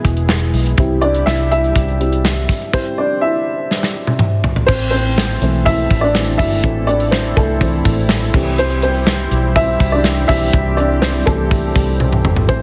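Piano-driven pop in A minor at 123 BPM, this driving, dramatic passage is cut from a longer piece and carries a heavily compressed radio sound with light reverb. A dark, woody upright piano sits up front throughout, taking solo passages over a round, foam-muted electric bass and a punchy studio drum kit with bright cymbals, while a smooth sawtooth analog pad with chorus holds sustained chords in the background. Drum fills mark 3.7 and 12.0 seconds, the first leading into a new section at 4.7 seconds where the harmony settles from E and C onto A minor.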